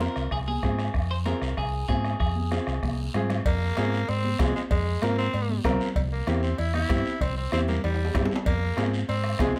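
A gritty, vibrato-laden tenor saxophone takes a fiery solo from 3.5 s in this passionate cumbia excerpt at 192 BPM in F minor, following a bright, twangy clean electric guitar melody with spring reverb that ends at 3.1 s, all over woody upright piano, a dark, punchy fingered electric bass up front, a distant soft-beater bombo, thin high-tuned congas and raspy guiro, with ringing cowbell and timbales entering alongside the saxophone, drum fills, and close, detailed sound in light reverb.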